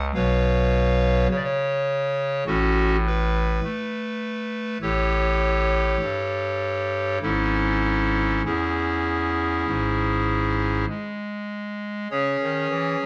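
A hollow clarinet stop on pipe organ, voiced in baroque style with a touch of chiff and placed up front, carries this grave, dark chorale-style classical excerpt in C# minor at a slow 50 BPM in straight 4/4, moving from C#7/B through F#m/A and A7 to C#m/G# before settling on C#m at 12.1 seconds, all within a moderate stone-room reverb and a dusky production.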